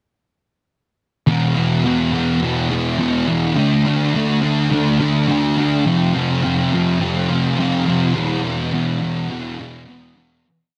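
At 1.3 seconds a thick, dark fuzz guitar enters alone, double-tracked and up front, strumming distorted power chords from E5 to D5 to F5 and back to E5 with whammy-bar dips, thickened by ensemble chorus. This brooding, melancholic rock piece moves at 104 BPM in a straight 4/4. A lush hall reverb surrounds the guitar in a dense, heavily limited modern master, and the piece fades out from 8.2 to 10.5 seconds.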